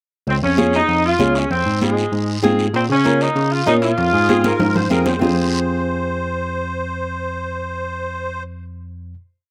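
A straight, driving cumbia groove in 4/4 comes from ringing, high-tuned congas with slapback echo, a raspy guiro, and very quiet metal-shell timbales that join at 2.7 seconds, all under a bright, bell-like electric piano playing the cumbia bass figure up front. A mellow, vintage saxophone section carries a motif-based melody with vibrato, while a fingerpicked flamenco guitar, with finger squeak and its own slapback echo, plays rhythmic triad chords, and a reedy, shimmering musette accordion adds a second line from 4.1 seconds. This fiery Latin piece sounds close and dry, as if played outdoors, and after a drum fill it closes on a final chord at 5.2 seconds.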